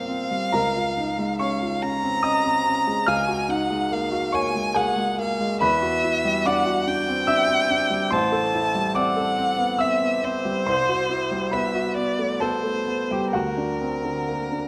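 A solo violin and a baby grand piano begin together, opening this brief impressionist classical passage for duo in an unhurried, dreamy and pastoral mood. Set in 3/4 with a rubato feel, the music drifts through lush, colorful harmonies, moving from a Cm11 over Bb and Db69 toward Em9, Am7, Cmaj7#11 and finally an augmented seventh chord on D that hangs unresolved as the fragment breaks off at 14.7 seconds. The single bowed violin carries the melody with a focused, vibrato-laden tone, sitting up front in the mix. Beneath it, the piano supplies the accompaniment across a broad span from deep bass to high treble, its sound clear and polished and equally present. A moderate concert hall reverb gives the pair a sense of space while keeping the detail of both instruments intact.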